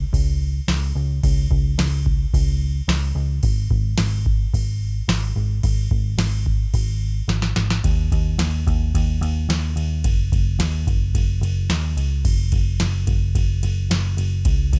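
A straight 4/4 pulse at 109 BPM drives this blissful, dreamy shoegaze and dream pop rock excerpt, carried by a booming analog drum machine with a deep kick, crisp snare, ride and crash cymbals, all with a tape-warm character. Up front beside it, a vintage muted picked electric bass plays dark, round, amped tones low in its register. A drum fill at 7.3 s leads into a new section at 7.8 s, and the dry room gives both parts a close, intimate presence.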